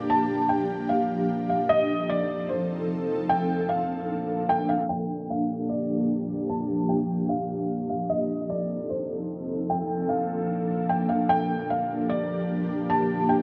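Ethereal and spacious, this short hip hop excerpt moves at 150 BPM in 4/4 with a half-time feel, set in G minor and tuned slightly sharp to A4 = 443 Hz. A felt-muted upright piano carries the melody throughout, its soft, intimate tone sitting up front with audible action noise, dulled by a low-pass filter and trailed by digital delay. Beneath it, an airy pad holds sustained chords with slow attacks and long releases, its detuned unison voices thickened by ensemble chorus, built-in reverb and tremolo, plus a sub octave that adds depth. The harmony cycles through Gm7, F7 and Bbmaj7, with a filter sweep running from 4.9 to 11.3 seconds before the progression returns to Gm7 at 11.3 seconds. A moderate plate reverb and a rough home-demo mix with its own low-pass filtering give the whole piece a spacious, ethereal finish.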